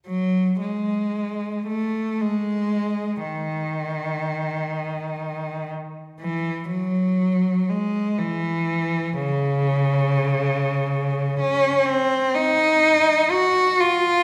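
A recital hall's wet reverb, lingering about 1.6 seconds, surrounds a single cello placed close and up front, giving the recording a spacious yet intimate sound. This is a classical piece for unaccompanied cello, meditative and mournful in mood, heard here as a short fragment cut from a longer work. One player bows alone from 0.1 to 14.2 seconds, staying within a range from C#3 to F#4. The tone is clear and focused, colored by a singing vibrato that carries the expressive, freely timed phrasing. The hall's resonance gives each bowed line a solemn, reflective glow that suits the sorrowful character of the music.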